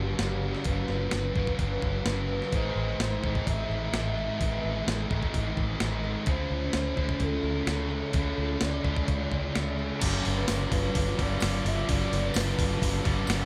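Shoegaze-leaning dream pop rock at 128 BPM in 4/4 with a straight feel, sitting in G mixolydian and carrying a blissful, wistful mood through this short cut from a longer piece. A pure, breathy sine lead with a soft attack floats the melody between G4 and E5, its sustained tone colored by chorus, phaser, vibrato and analog delay, while a fingerpicked twelve-string acoustic guitar shimmers with octave-doubled arpeggios in the background through analog chorus and delay. Beneath them, a thick fuzz guitar with ensemble chorus and a crunchy overdriven guitar washed in reverse reverb drive the riffs, anchored by a dark, round, foam-muted electric bass. A crisp 8-bit drum machine, tape-toned and up front with a thumpy kick and medium-tuned snare, plays kick, snare, hi-hat and crash from 0.2 seconds. At 10.0 seconds the chords return to G7 and a bright, double-tracked biting overdriven guitar joins the riff, with a very quiet, jingly tambourine arriving at 10.5 seconds, all inside a dark, digitally ambient production.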